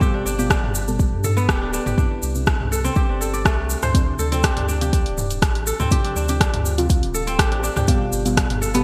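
An up-front deep electronic kick drives this earthy afro house excerpt, carrying crisp, ringing fingerpicked kora arpeggios and dark, detuned chord stabs with chorus, phaser and a filter sweep, both with digital delay and sidechain pumping, and the round sine sub bass that enters at 0.3 s pumps with the sidechain too, while a grainy, distant egg shaker and a tape-warm deep house kit of hi-hat, rim click and toms with gated reverb, arriving at 0.5 s, fill out a bright 1980s-style digital mix in a lush hall.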